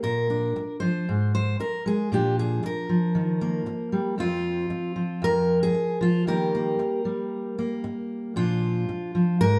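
A bright, full-bodied fingerpicked steel-string dreadnought guitar opens this short, peaceful folk fragment, played solo and up front with the crisp ring of fresh strings. At a relaxed 115 BPM in straight 4/4, it moves through a Bb mixolydian progression of Bb, Ab5, Ebadd9, F5 and Eb, with a brief chordless moment at 5.2 seconds, before returning to Bb at 8.4 seconds. A generous studio reverb surrounds the guitar with the airy sense of a live room performance.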